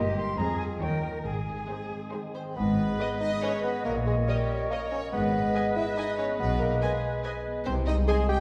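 Strings, flute and harp open this playful, whimsical film cue together, a short cut from a longer piece in a three-beat metre. A lush violin section carries the melody from the background, while a second chamber violin section and a pure, metallic flute weave supporting lines, and a very quiet, focused viola section fills the middle. The harp's ringing, fingerpicked arpeggios sit softly behind, above an up-front bowed double bass section and an expressive cello section with soft attacks and portamento. A mellow bassoon joins at 2.1 seconds, and at 2.6 seconds the cue moves into its second section as a clear, roomy oboe, a classical-style clarinet and a dark French horn section holding sustained chords arrive. The quirky, magical mood is framed by a wet scoring-stage reverb that places the ensemble further back in the room.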